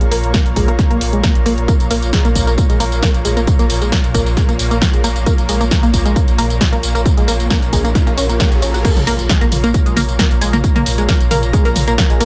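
A heavy, layered electronic kick drives this excerpt of industrial, hypnotic peak-time techno from 0.3 seconds, with a tape-toned techno drum kit adding a punchy snare, warm hats, tambourine, toms and crash cymbal, both re-recorded in a small room. Beneath it sits a deep, thick sub bass, overdriven and low-pass filtered, pumping against the kick in a straight groove. The tight sequenced synth riff carries the hook with a detuned, wave-folded, plucky edge, coloured by chorus, phaser, tube saturation, sidechain pumping and dub echo. Further back, a swarming, tense granular drone evolves in its own reverb, while an airy, breathy pad with a bright noise layer and chorus floats above, both pulsing with the sidechain. A very quiet riser builds from 7.1 seconds into an impact that marks the drop at 8.8 seconds, all set in a digital ambience.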